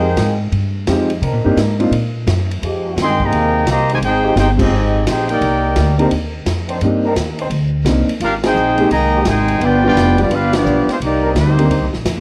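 A sultry, brassy big band swing fragment in C minor at 172 BPM opens with a brief entry from the up-front trumpet section and trombones over woody pizzicato upright bass, a cup-muted trombone section holding veiled chords far in the background, and a grand piano with audible action noise. The horns return at 3.0 and 8.2 seconds, the trumpets carrying a lightly vibrato melody with a smooth top while the trombones play a second line, and the band hits accents at 4.5, 8.4 and 10.5 seconds as the harmony moves through minor ninth chords to Abmaj7 and G7. An airy, polished drum kit with punchy kick and ride swings underneath, all set in a moderate large studio room and colored by worn cassette tape with warbly pitch drift.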